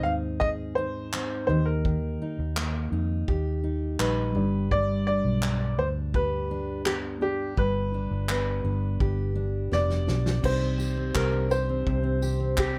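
A bright, woody upright piano carries the melody up front in this carefree, easy-going acoustic pop excerpt, over a full-bodied fingerpicked jumbo steel-string guitar, a reedy, clean electric piano in the background, a dark, round, foam-muted vintage electric bass, and a natural small-room country drum kit with fat snare, punchy kick, crash, handclaps and tambourine that enters at 0.4 seconds and plays a fill from 9.7 seconds before the harmony shifts to Cmadd9 at 10.4 seconds, the whole mix set in light reverb with close, detailed miking.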